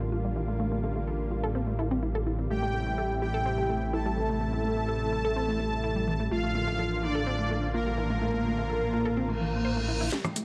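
Melodic techno at 126 BPM in 4/4, this hypnotic, melancholic excerpt is cut from a longer piece and moves from Gm7/A through Am7 to Bb/A. A lush, bright unison pad holds sustained chords with chorus, a filter sweep running across it, while a menacing, detuned saw bass swells up front, its evolving tone thickened by tube saturation. From the start a punchy, full-bodied unison pluck spins arpeggios through cassette tape and digital delay. At 2.5 s a bold, mellow unison lead takes the melody with vibrato, analog chorus and dub echo, joined by a smooth supersaw second line above it, treated with phaser and digital delay. A reverse cymbal and riser build from 9.3 s, and at 10.1 s an electronic drum kit bursts in up front with a short fill of cracking snare, metallic hats, congas, rim click and shaker, all set in a moderate concert hall reverb.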